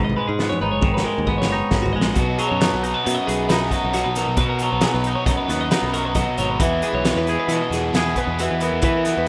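A loose indie drum kit opens with a fill that runs to 2.2 seconds, its fat snare and punchy kick sitting up front in a pumping studio room, while a clean, scooped electric guitar picks twangy accompaniment over a G#m9 chord. This bright, playful cut from a longer math rock and midwest emo piece moves at 135 BPM in a straight 5/4, in B major. A compressed twelve-string electric guitar spins bright arpeggios high above, and a picked electric bass played direct anchors the low end. At 2.2 seconds the harmony shifts to B6 and an overdriven, double-tracked electric guitar enters with a riff bathed in spring reverb, before the chords move to E at 6.6 seconds. The whole mix has the rough, lightly reverberant feel of a home demo, with its top end dulled.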